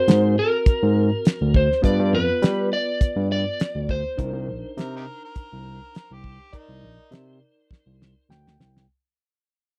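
A slightly broken-up electric slide guitar with slapback echo sings a smoky, brooding melody over a reedy electric piano with overdrive and fast tremolo in the background, a bright, barky tine electric piano bass and an up-front, cloth-damped, thuddy drum kit with a fat snare, in a dry, close 1970s-style straight-eighth soul blues at 102 BPM in C minor moving through Ab7, G7 and Cm7, while a gritty, overdriven harmonica slips in quietly at 4.8 s with scooped notes and tongue slaps before a drum fill at 7.7 s and a reed-piano fill close out this fading excerpt.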